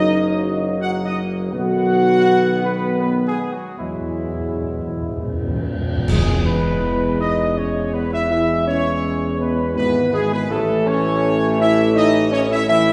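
Triumphant yet solemn, this classical ceremonial fanfare in a stately triple metre is cut from a longer piece. A mellow trumpet section carries the melody up front with light vibrato and a soft attack, while a dark French horn section and a clear, punchy trombone section, set in the background, hold sustained chords beneath it. A roomy, distant tuba anchors the bass throughout. Between 3.8 and 7.5 seconds the percussion joins: round timpani struck with soft mallets on calf heads play a fill, and a cymbal swell with bright clash cymbals and concert bass drum adds weight, with a band accent arriving at 6.1 seconds. The brass sits in a wet scoring-stage reverb heard from further back in the room, lending the chords, which move from F#6 through Eadd9 to E and A, a broad, ceremonial grandeur.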